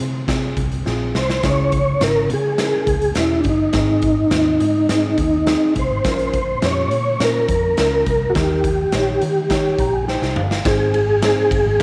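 Uptempo 1960s-style soul in Ab major at 104 BPM, this warm, danceable excerpt sets a mellow tine electric piano and a dark, round, foam-muted picked bass over a gritty, saturated raw garage drum kit whose punchy kick and medium-tuned snare fill a bright stone room, with a drum fill at 0.9 seconds leading the changes from Fm/C through Dbm, Ab, Bbm and Eb. At 1.2 seconds a soft, flute-like tonewheel organ enters up front with the melody, colored by chorus vibrato and a fast rotary speaker. Near the end the electric piano adds a fill from 9.5 seconds alongside another drum fill, landing on Ab as a new section begins at 10.7 seconds, all in a small room with light reverb.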